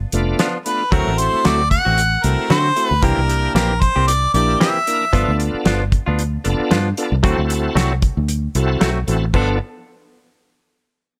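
A dark, round, foam-muted fingered electric bass opens this rollicking, swaggering soul blues, cut from a longer piece, joined at once by a damped 70s drum kit with a fat snare and tight kick, and by a shouting tonewheel organ with key click, chorus vibrato and a slow rotary speaker. At 114 BPM in a straight-eighth 4/4 feel, a direct-recorded clean electric guitar adds twangy, compressed picked stabs, while an overdriven harmonica carries the melody from 0.7 to 5.4 seconds with light vibrato and a smooth top. The sound is dry and close, moving through G7, D7 and C7 before landing on G9.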